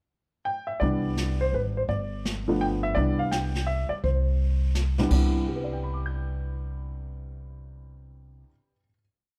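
A warm baby grand piano leads this brief, swinging jazz piano trio piece in C major at 168 BPM in 3/4, opening alone with a pickup at 0.5 seconds before spinning a free melody over syncopated comping with rootless voicings, moving through Cmaj9 and G9 to a final chord at 5.1 seconds. A woody, up-front upright bass plays pizzicato in a two-feel, while a softer brush kit with dark cymbals, a boomy kick and brush sweeps on the snare joins at 0.8 seconds and drops out at 5.5 seconds. The studio sound carries little reverb.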